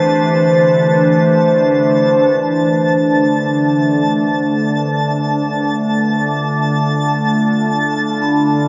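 A morphing wavetable pad sits up front in this melancholic, reflective ambient piece, its warbling, vintage sine tone swelling in slowly on sustained chords with chorus and its own reverb. Cut from a longer work, it drifts in free time in D dorian, tuned to A4 = 437 Hz, moving from Em7 to Dm7 at 2.4 seconds, where a filter sweep begins on the pad and runs to the end. Very quiet beneath it, a vibraphone played with medium hard mallets ripples through metallic, ringing arpeggios with a medium motor vibrato. A calm, organ-like drone holds a low unison sine with ensemble chorus, while a granular FM texture adds a twinkling, sparkling octave-up shimmer high above. The whole is bathed in a cathedral reverb with a 5.3-second decay, placing the sound in a vast, echoing space.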